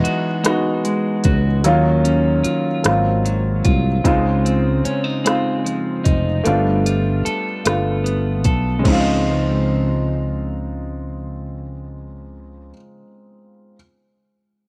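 A clean, picked electric guitar and an intimate grand piano open this excerpt together, the guitar carrying a second line through spring reverb and tape echo while the piano, with its natural sound and audible action noise, supplies the accompaniment. It is a slow, sultry six-eight R&B groove at 50 BPM in dotted quarters, with a straight feel, tuned to A4 = 441 Hz, and its yearning mood is carried by lush harmony moving from Emaj9 through D#m9, G#13 and C#maj9 to G9 before returning to C#maj9. A round, direct fretless electric bass sits up front in the low register, and a produced electronic drum kit with a soft kick, smooth hi-hats, rim clicks and a crash cymbal adds a tape-warm pulse until 9.0 seconds. After that the drums drop out for the closing bars, leaving guitar, bass and piano, with the piano sounding last until 13.8 seconds. Light reverb surrounds the whole, and each part stays close and present, as the piece cuts off mid-flow from a longer work.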